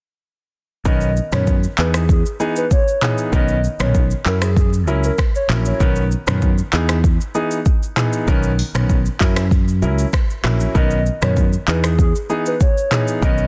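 Afrobeats with a joyful, romantic glow: an electronic afro-pop kit up front, with its deep kick, dark hats, finger snaps, handclaps, rim clicks, shaker, toms and a softly clipped snare, drives the groove alongside a growly, punchy fingered electric bass. A smooth, vintage-toned concert grand with long sustain plays warm chords underneath, while a hollow, woody clarinet-like synth lead with chorus, vibrato and digital delay carries a mellow melody that drops out at 5.8 seconds and returns at 10.8. Cut from a longer piece, it sits in a digital ambience with a dense, heavily limited modern master.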